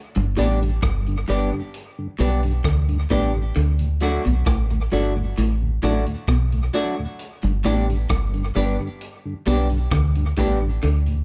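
From 0.2 s a laid-back, sunny roots reggae groove at 66 BPM in G major settles in, with a round, foam-muted dub bass up front beneath a vintage kit's punchy kick, hi-hat and rim click soaked in dub echo, a clean picked guitar riff bathed in lush chorus, and a mellow tonewheel organ with chorus vibrato and slow rotary speaker in the background, joined at 0.4 s by a hollow-bodied semi-hollow guitar through tape echo and woody, dark upright piano stabs with long sustain, set in a light reverb over a G to D and back to G progression in this short cut from a longer piece.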